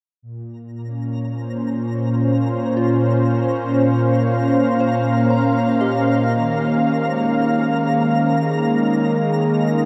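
A slow, straight 3/4 pulse at 59 BPM sets this melancholic yet serene ambient fragment in Bb dorian, cut from a longer piece. A smooth, detuned sawtooth analog pad sits up front, holding soft-attacked chords through chorus and shimmer reverb, moving from Bbmadd9 to Eb7sus4 at 6.3 seconds. At 1.1 seconds a twinkling granular FM texture fades in high above, its sparkling octave-up shimmer swelling in slowly and trailing a long release. From 2.8 seconds a pure, gentle FM bell fades in behind the pad with decaying arpeggios, colored by chorus, phaser, diffuse ambient delay and shimmer reverb. The whole is steeped in a vast, wet reverb, giving the production a dark, warm depth.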